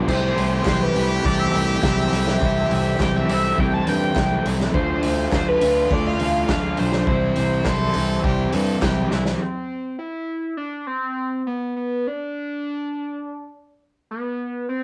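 Indie rock at 103 BPM in C major, wistful and carefree, cut from a longer piece and captured as a rough rehearsal-room recording with moderate studio reverb. Two overdriven electric guitars, one with tremolo, play riffs in the background over a punchy, fuzz-drenched picked bass up front and a vintage drum kit with dark cymbals and a pumping room sound, while a quiet group handclap adds hollow percussion and a brilliant, distant trumpet carries a second line. A screaming, guitar-like synth lead with phaser and vibrato sings the melody from 0.1 seconds, and after a drum fill at 9.1 seconds it continues alone until 14.8 seconds.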